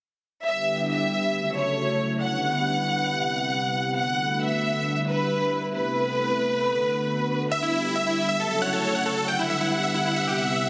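Trance excerpt with a euphoric, soaring mood, where a lush, warbling chorused pad holds sustained chords and a rich, vibrato-laden violin section with dub echo carries a second line from 0.5 seconds, before a huge, bright, detuned supersaw lead takes the melody at 7.5 seconds, all bathed in a moderate, lush hall reverb and a dense, heavily limited modern master.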